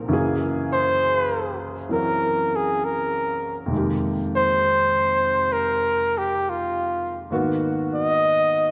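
A jazz ballad at 67 BPM with a gentle swing, intimate and romantic in mood, cut from a longer piece. A concert grand piano accompanies from the start, close and natural with deep bass and audible action noise, moving through Gb9, Fm11 and Abm7 chords, while a soft-attacked, close-miked flugelhorn enters at 0.7 seconds to carry the melody with vibrato. Both sit up front in a wet concert hall reverb that lends the sound a spacious, resonant glow.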